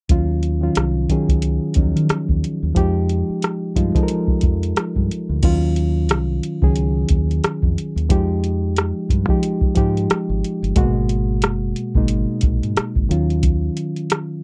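Smooth and soulful, this short neo-soul and R&B cut sits at 90 BPM in 4/4 with a gentle sixteenth-note swing, tuned to A4 = 437 Hz and moving through lush minor ninth chords from Ebm9 to Fm9, with a turn to Abm9 at 10.8 seconds. A reedy, lightly overdriven electric piano heard through its built-in speakers sits up front alongside a soft analog rhythm box with a deep kick, metallic hi-hats, rim clicks and crash, while a dark, round fingered electric bass anchors the low end. The sound is dry and close, like a 1970s studio session, and the bass drops out at 13.7 seconds, during the return to Ebm9 and shortly before the piano stops at 14.4 seconds.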